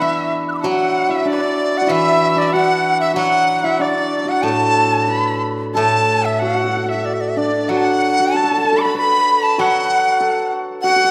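Rubato around 94 BPM in 4/4, this festive, pastoral excerpt of Chinese traditional chamber music features an airy, buzzing bamboo dizi up front carrying the melody with a straight, soft-attacked tone, while a focused, boxy erhu adds a bowed second line with vibrato and portamento, a shimmering hammered dulcimer rings alongside it, and a silvery steel-string zither played with fingerpicks supplies bright accompaniment beneath, all bathed in a wet concert hall reverb.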